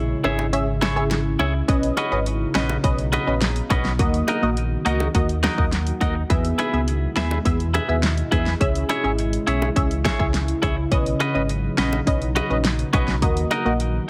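A dry, heavily compressed, radio-ready sound frames this sunny, summery dancehall cut, taken from a longer piece and moving at 104 BPM in a straight 4/4 in B major. It opens with a short break before the groove settles in at 1.7 seconds, cycling through C#m, Badd9, D#m and E. Up front, an electronic, layered pop drum kit lays down a punchy kick, a fat snare, rim clicks and warm hi-hats, while a deep sine sub bass with an added octave holds the low end with fast-attack, sustained notes. Detuned sawtooth chord stabs with a filter pluck give a full-bodied, mellow accompaniment treated with chorus and phaser, and a bright, twangy clean electric guitar picks compressed arpeggios through tape echo. Beneath them, a dark, moody ambient pad of unison sawtooth and sine layers with a sub octave swells in slowly and sustains long chords, colored by chorus, phaser, its own reverb and sidechain pumping. 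Tight, high-tuned acoustic bongos played with hard hands sit in the background, adding a small-room sparkle to the summery bounce.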